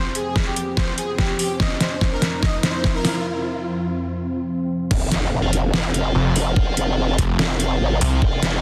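A snarling distorted saw bass stands out most, arriving at 6.2 s as a bright, detuned sawtooth growl that sits up front and loudest of all in this menacing, chaotic excerpt of heavy wobble dubstep at 145 BPM in a half-time 4/4 feel, on an F5 chord. The opening build-up sets a soft supersaw melody, airy and mellow with tape echo, over an evolving wavetable pad whose dark, morphing sustained chords carry ensemble chorus, 12-bit sampler grit and sidechain pumping. A dubstep drum kit with a deep overdriven snare and metallic hats plays a fill beneath a knocking electronic kick drum, while a riser and impact sit in the background, with a break following the rise. At 4.9 s the drop hits with a wobbling, formant-filtered growl bass given chorus and overdrive, and from 5.4 s a heavy high-gain guitar adds double-tracked, distorted stabs with tape echo. A moderate hall reverb surrounds the parts, and the master is dense and heavily limited.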